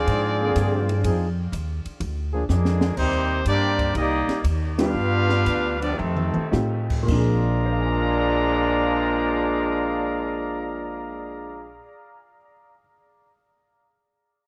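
A clear, up-front trumpet section carries the melody with light vibrato, a soft attack and a touch of tape echo in this joyful, swinging big band excerpt, while a mellow trombone section plays a tight second line and a second trombone section briefly holds sustained chords near the start. A woody pizzicato upright bass with steel strings sits close, and an open jazz drum kit with a high-tuned snare and boomy kick adds fills before stopping at 7.3 seconds, as the band slows through the middle and hits an accent at 4.7 seconds. A natural, short-sustain upright piano joins with accompaniment at 4.8 seconds, in a dry, close 1970s-style studio recording.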